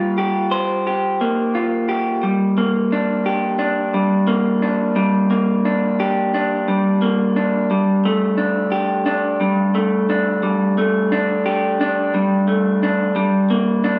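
Brooding and melancholic, this short rock excerpt features a solo electric guitar through a small old amp, picked and twangy with a slightly broken-up, lo-fi edge, sitting up front in a wet stone room. Over its 14 seconds the guitar moves through suspended chords and G minor, captured as a band playing live in one room, giving the cut-out passage a raw feel.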